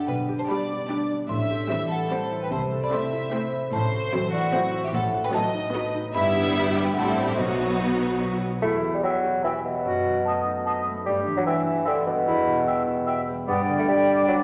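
A ringing, fingerpicked concert harp sits up front and plays arpeggios throughout this short, playful film cue, which is cut from a longer piece and moves at 148 BPM in a straight 3/4 with a magical, quirky, whimsical mood. In the opening section a woody, dry xylophone struck with soft rubber mallets carries the melody high above the harp, while a lush violin section up front plays a melody lower down and a second violin section adds a background line. Violas supply expressive accompaniment with vibrato and portamento, and smooth cello and double bass sections hold the bass underneath, the harmony settling into E minor and closing this part on a B chord. At 8.6 s the strings and xylophone give way to woodwinds: a clear, vintage-sounding clarinet and a distant, roomy bassoon placed up front, joined at 9.0 s by a pure, hollow silver flute in the background and an oboe, the flute and oboe each adding a second line above the harp. 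The whole cue sits in a wet scoring-stage reverb that gives it a spacious, storybook glow.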